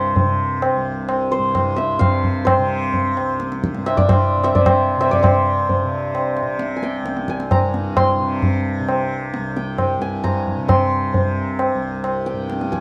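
Hindustani classical music in raga Charukeshi on C, meditative and radiant, at 131 BPM in 3/4 and gradually speeding up, with a bright, ringing santur carrying the melody over a softly plucked, buzzing tanpura drone while low-tuned tabla with a short ring, up front in a dry, close 1970s-style studio sound, enters at 0.2 seconds, the passage shifting into a new section at 5.2 seconds in this fragment of a longer piece.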